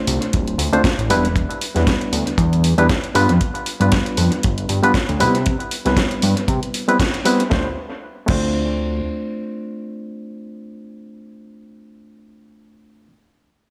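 Nu-disco with a groovy, sensual feel, moving at 117 BPM in 4/4 with a light swing on the sixteenths and set in D dorian. A barky, reedy electric piano carries the accompaniment up front, lightly overdriven as if through built-in speakers, with sidechain pumping and an analog delay trailing its chords through Dm7, Em7, G7 and Cmaj7 before returning to Dm7. Beneath it a fat analog bass with a nasal, detuned sawtooth edge and a fast filter pluck sits prominently in the low register. A layered house kit with a cracking snare, hi-hat and crash, tape-warm and re-recorded in a small room, runs alongside a dry, tight acoustic kick, with a band accent landing at 7.0 seconds. The whole mix is echo-heavy, set in a small room with a moderate echo chamber reverb, and after the drums and bass drop out the electric piano plays on alone until 13.1 seconds in this fragment cut from a longer piece.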